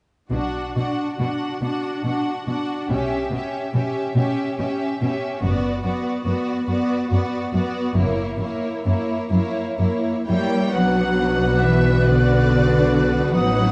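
Classical orchestral music, this is a slow, romantic movement in B minor and 6/8, moving at roughly 41-49 BPM in dotted quarters with a rubato feel that sounds yearning and melancholic. From 0.3 s the strings carry everything: a rich, smooth violin section sings the melody with vibrato, a second violin section with a lush, focused tone adds a second line beneath it, and rich, even violas fill in the accompaniment. Cellos and woody double basses anchor the bass, sitting up front in the mix with expressive bowing. The harmony moves from B minor through C#m7b5 over B and B minor over F# to a tense F#7, settling back on B minor at 10.7 s, where woodwinds and horns join. There a pure, soft-attacked flute adds a high second line, a dark bassoon murmurs in the background on a single note, and a mellow French horn section sustains chords. The sound is dark and warm, set in a moderate scoring-stage reverb, and the passage is cut from a longer piece.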